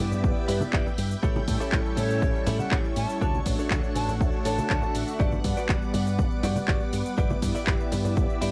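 A straight 4/4 groove at 121 BPM starts at 0.1 s with a house kit of handclaps, hi-hat and shaker and with soft-handed congas and egg shaker sitting in the background. A punchy, up-front electronic kick drives it from 0.2 s, while a fingered electric bass with an envelope filter pulses with sidechain pumping. This feel-good, groovy nu-disco passage in A mixolydian sets a twangy, clean electric guitar riff with lush chorus over a smooth, detuned analog pad and a full-bodied vintage string machine, which also pumps with sidechain, as the chords move through Em7/G, A7, Dmaj7 and Gmaj7. An airy silver concert flute carries a tongued melody with analog delay from 2.0 to 4.9 s, and the guitar, pad, strings and flute share a cassette-tape colour in a dry home recording.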